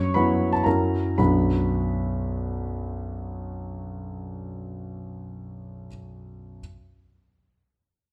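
A triple-time romantic dance in 3/4 with dotted rhythms and free rubato, this wistful, capricious fragment of a longer classical piece moves between 104 and 129 BPM in B minor, tuned to A4 = 437 Hz. A solo concert grand carries it from 0.0 to 6.6 seconds, its intimate, up-front tone showing deep bass, a natural character and audible action noise across a range from B1 to C#6. The opening slows over an F#7sus4 that resolves to F#7 before landing on B minor at 1.2 seconds, all captured by close, detailed microphones in a wet recital hall with a 1.4-second reverb tail.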